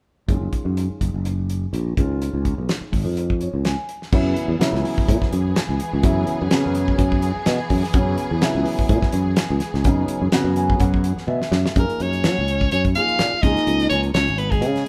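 Recorded as a band playing live in one room with light reverb, this funky, bright slice of electric jazz fusion moves at 126 BPM in 4/4 with a light 16th-note swing. A dry, acoustic 70s drum kit sits up front with dark cymbals, a fat snare and a tight kick, beside a growly, amped fretless electric bass that sustains its lines. A dark, mellow grand piano comps underneath and adds short fills. At 4.1 seconds a rich, smooth studio string section enters with bowed, vibrato-laden chords over an F#9sus4 harmony. After a drum fill at 11.3 seconds, the music settles into F# major at 11.8 seconds, where an edgy, punchy soprano saxophone takes the melody while a breathy, whispered trombone traces a second line in the background.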